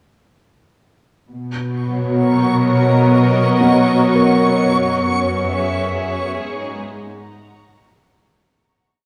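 A peaceful, warm ambient piece in B major at 70 BPM opens at 1.3 seconds on a dark, woody studio string section holding lush, slowly shifting chords up front, anchored by a symphonic cello section sustaining the root bass with expressive vibrato. A bowed-like sawtooth drone with a tense, string-like edge and a noise layer swells in slowly in the background, joined by a reversed, swelling texture: a detuned, granular triangle tone holding a single bright high note. At 3.6 seconds a felt-muted upright piano enters with mellow, intimate arpeggios, its thick felt and audible action noise giving a vintage closeness, set as four slow loops of unequal length drifting against each other under a diffuse ambient delay. The harmony moves from Bmaj9 through F#9sus4 to G#m9 while a filter sweep passes over the strings and the piece fades out from 4.7 seconds. The whole sits in a vast, echoing space with a huge, wet reverb tail.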